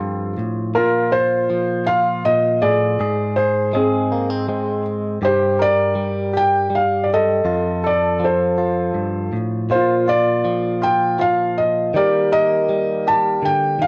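Light reverb and the character of a home cassette recording frame this short cut from a longer acoustic folk-pop ballad, heartfelt and tender in mood. It moves at 80 BPM in a straight 3/4, in Bb major with tuning set at A4 = 443 Hz. Up front, a felt-muted upright piano carries the melody between C4 and A5, its tone mellow and intimate with thin felt and audible action noise. Beside it, a direct-recorded clean electric guitar provides accompaniment from F2 to Bb4, its picked notes bright, twangy and compressed, coloured by spring reverb and cassette tape. Both parts play throughout, and the harmony drifts from F through Bbsus2, Ab and Gm before settling on F, Bb and finally Eb at 11.9 seconds.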